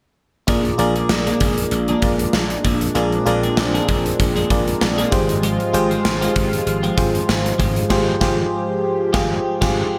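Bathed in a moderate plate reverb, this short cut from a longer 1980s-style pop piece moves at 97 BPM in Bb mixolydian with a light sixteenth-note swing, its nostalgic, uplifting mood resting on a shift from Bb7 to Fmadd9/Ab at 5.1 seconds. Up front, a bell-like FM electric piano with chorus and shimmer reverb carries the accompaniment beside a punchy gated 80s drum kit of kick, snare, hi-hat and crash, while a growly slap bass anchors the low end. Behind them, a twangy, compressed twelve-string electric guitar plays a riff through lush chorus and digital delay, a detuned pulse-width pad holds sustained chords, and the band hits an accent from 7.9 seconds.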